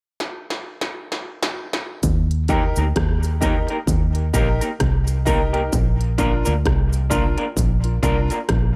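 Dub reggae at 65 BPM in Eb major, laid-back and hazy with a swung sixteenth-note feel, cut from a longer piece: a distorted, electronic-sounding industrial drum kit with a clanging snare and smooth hats opens with a fill at 0.2 s, then at 2.0 s a dark, round, punchy foam-muted electric bass arrives up front alongside a faint cabasa as the harmony settles on Eb before shifting to Bb at 5.7 s, while a slightly broken-up, lo-fi electric guitar and brilliant, worn baby grand piano stabs with audible action noise drift through dub echo in a dry, close mix.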